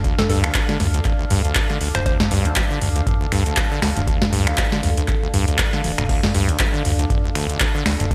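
Raw and driving, this acid house fragment sets a squelchy, resonant sawtooth acid bass riff with tube saturation and digital delay over a round sine sub bass, an overdriven electronic kick and an up-front, booming analog drum machine of crisp snare, metallic hats, handclaps, finger snaps, toms and crash cymbal with gated reverb and a fill at 5.8 s, while a moody, evolving pad hovers alongside and a hollow, warbling square pluck surfaces in the background from 0.2 to 2.2 s, all in a bright 1980s-style digital production with lush hall reverb.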